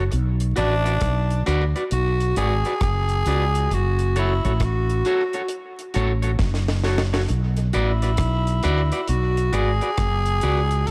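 Roots reggae at a slow 67 BPM in B dorian, hypnotic and serious, where a raspy, growling tenor saxophone enters up front at 0.6 seconds with light vibrato over a round, dark fretless bass with lush chorus, a twangy, slightly broken-up electric guitar with dub echo, and a deep drum kit with a high-tuned snare, tight kick and tape echo that plays a fill at 6.4 seconds, all moving from Bm to F#m and back in a small room with light reverb and vinyl crackle, cut from a longer piece.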